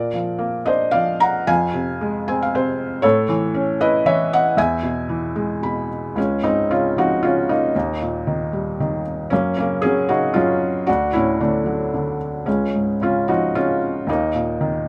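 A felt-muted upright piano plays alone in this relaxed, hopeful excerpt of lyrical classical solo piano in a rubato 3/4, its soft, intimate tone and short sustain caught up front by close, detailed microphones with light reverb and audible action noise, spanning Db2 to B5, with brief fills at 2.0 and 5.4 seconds and a new section from 6.2 seconds that moves through Db, Eb, Gb and D chords.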